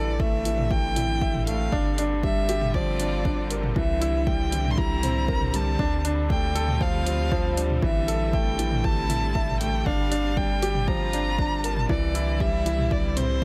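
An expressive solo violin, bowed with vibrato and portamento, carries a delayed melody over a warm, up-front concert grand piano riff with short sustain and delay, lush symphonic strings holding smooth sustained chords with sidechain pumping, and a round, dark analog bass with a filter sweep and the same pumping, while a punchy electronic kick entering at 0.2 s and a layered deep house kit of hi-hat and toms from 0.5 s drive this intimate, hypnotic piano-and-strings electronica in G dorian at 118 BPM in straight 4/4, set in a small room ambience.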